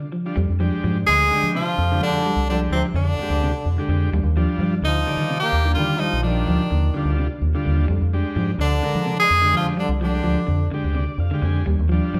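Recorded live in one room, this funky, defiant afrobeat excerpt sits in a wet, large studio reverb, with a straight feel in 4/4. A clean, picked electric guitar opens alone with arpeggios, and within the first second a vintage, buzzy combo organ and a deep dub fingered electric bass, dark, round and up front, join it. At 1.1 seconds an edgy tenor saxophone takes the melody in a pop style, while a bright trombone carries a second line, both horns shaded with light vibrato. The harmony moves between Fm69 and Ebmaj9. When the horns stop at 10.7 seconds, the transistor combo organ plays a fill, and the guitar, organ and bass carry on to the end.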